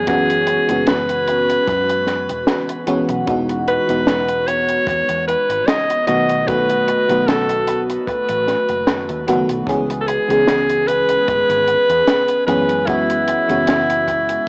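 Woozy and faded, this vaporwave excerpt drifts at 75 BPM in 4/4 with a light 16th-note swing, soaked in worn, warbling cassette tape with pitch drift and a small-speaker sound. Up front, an edgy alto saxophone sings a pop-style solo with scooped notes and tape echo over a lush, detuned FM electric piano with a soft pad layer, subtle chorus and analog delay, moving through chords from F#9sus4 to Emaj9, B7 and C#m7. Beneath them sit a round, foam-muted fingered electric bass, a compact cocktail kit with a high-tuned snare and hi-hat, and a punchy kick tucked in the background, all in a small room with light reverb.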